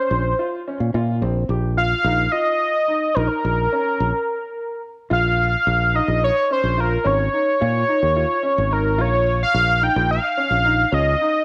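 Intricate and tense, this progressive instrumental excerpt in Bb dorian runs in 7/8 at 216 BPM (eighths), with a bold, warbling, retro octave-doubled lead carrying the melody up front through chorus and slapback echo, a clear, open concert grand piano playing arpeggios beneath, and a growly, direct fingered electric bass, heard within a moderate echo chamber reverb, with a full stop at 4.3 seconds before the second section moves through Bbm7 and Eb7/Bb.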